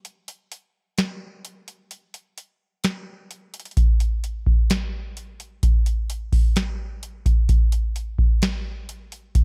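Hip hop at 129 BPM in a half-time 4/4 feel, this short excerpt has a dreamy, floating mood carried entirely by a booming analog drum machine that plays kick, snare and hi-hat throughout its 9.4 seconds. The first 3.8 seconds form a break. The dry, up-front sound puts a deep kick alongside a tonal snare and metallic hats, with a tape-like warmth and very little reverb around the kit.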